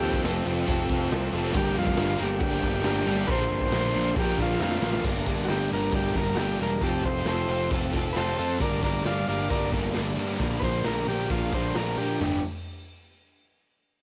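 Over a straight 4/4 pulse, this menacing, raw garage rock fragment pairs a punchy, saturated drum kit in a pumping small room with a growly fuzz picked electric bass and an up-front, double-tracked crunchy overdriven guitar riff, while a buzzy vintage combo organ with light vibrato takes a solo from 5.0 seconds, just after a drum fill, all with the gritty feel of a home cassette recording.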